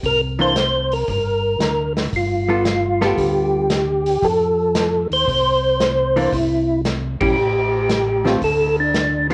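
Greasy and soulful, this short soul jazz organ trio excerpt swings easily in 4/4, with a smooth tonewheel organ carrying the bass line through chorus vibrato and a slow rotary speaker under a vintage drum kit whose punchy kick, dark cymbals and pumping small-room sound arrive with a rolled-off top. Up front, a percussive tonewheel organ sings the melody in a mellow, round voice with key click and third-harmonic percussion, while a clean, compressed hollow-body jazz guitar enters at 0.4 seconds to add picked accompaniment. The band hits an accent together at 7.1 seconds, all heard through the soft haze of a home cassette recording with light reverb and small-room ambience.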